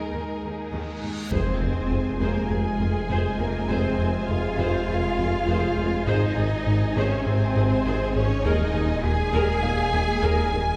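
A hushed bed of bowed strings opens this tense, relentless stretch of hybrid orchestral and electronic film score in F minor at 101 BPM, with violins carrying a soft-edged, expressive melody in the background over a lush second violin line, rich violas, expressive cellos and very quiet double basses, all shaded with vibrato. An ethereal, airy pad and a felt-muted upright piano, intimate and mellow with audible action noise, sit very quietly beneath the strings from the first moment. A huge, dark reverse cymbal rises from 0.8 s into an impact at 1.3 s, where the harmony moves from Ebsus4 to Fm. At that point the low end thickens: a rubbery, hollow, bouncy square-wave bass riff leads the mix, a thick, saturated, detuned saw bass with chorus rumbles underneath, and a distant, roomy tuba joins very quiet bright trombones and soft-attacked French horns holding chords. The passage shifts to Ab before returning to Ebsus4, all heard from further back in a wet scoring stage with a 1.9-second reverb.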